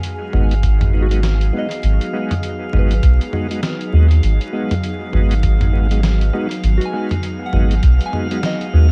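Ambient dub at 100 BPM in G# dorian with a 16th-note swing, this hazy, deep excerpt rests on a single G#m7 chord, carried by a round, up-front sub bass and an organ-like pad whose detuned unison and moving notch sit in built-in reverb. A gentle, warbling FM bell plays arpeggios through chorus and dub echo, a smooth tonewheel organ adds stabs through a slow rotary speaker from 0.3 s, and a glassy texture of drifting overtones hovers on a single high note. Muffled, tape-flavoured sampler drums with a fat snare, hi-hat and toms, joined at 0.6 s by a very quiet, thumpy kick, sit in a dry room under audible vinyl crackle.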